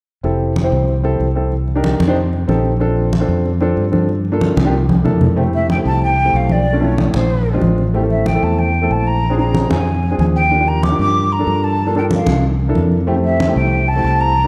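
This sunny, danceable Afro-Cuban jazz passage in F major moves briskly at 187 BPM in a straight 4/4, cut from a longer piece. A warm, intimate concert grand piano sits up front with its action noise audible and a deep low end, carrying the accompaniment over rich extended chords such as Fmaj9, Bbmaj9 and C13. A direct, up-front fingered electric bass anchors the low register while bright, thin-skinned congas, played with soft hands, sound more distant in a large room. After a brief drum fill at 4.9 seconds, the second section opens at 5.4 seconds, and moments later, at 5.5 seconds, a breathy, hollow jazz flute enters with a mellow, straight tone and a soft attack, taking the melody through to the end. Moderate stage reverb and a dark, warm production give the whole a rounded, glowing finish.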